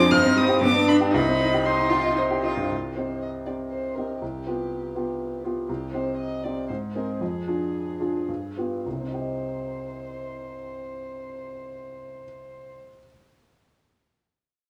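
This is a stormy, urgent classical-period movement for piano quartet in a quick triple metre, cut from a longer piece. All four players start together: the dark violin sings the melody up front, the cello adds a second line, and the viola joins the piano in accompaniment, sitting in the background with an airy, sul tasto bow. The cello and viola drop out before 3 seconds, leaving the violin and the clear baby grand piano to carry the music, with the piano continuing to the end at 13.1 seconds. The violin plays sul tasto with light vibrato and a soft attack, giving its line a smooth top, while the cello's tone is gentle and warm. The tempo slows between 4.9 and 8.8 seconds before the minor-key harmony settles back onto its home chord for the closing section. The sound is close and intimate, with moderate reverb in a small room, and the piano's action noise is audible.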